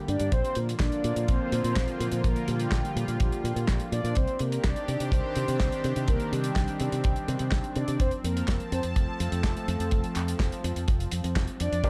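A dark, close-sounding italo disco excerpt at 125 BPM in 4/4, bittersweet yet danceable, where a round, brassy synth lead with chorus and tape echo carries the melody over a lush, detuned sawtooth pad, a bright fingered electric bass with an envelope filter and tube saturation, a damped 70s kit of handclaps, hi-hat and medium-tuned snare with a rolled-off top, and a tight, up-front kick in a small room, moving through Bb, Cmadd9 and F before a worn baby grand piano stab lands at 11.8 seconds.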